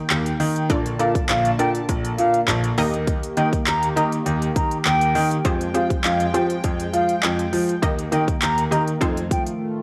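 Dance-pop at 101 BPM with a carefree, upbeat mood, this excerpt sets a mellow, hollow concert flute melody with tape echo over a shimmering, retro chorused pulse-width pad, a detuned, warbling unison pluck and a warm grand piano carrying the bass with audible action noise, all three pumping with sidechain, while a punchy, overdriven pop drum kit of kick, crisp hi-hat and handclaps drives through chords moving from Eb to Bbmaj7 and Fmadd9 before a break at 9.6 seconds, all in a moderate echo-chamber reverb.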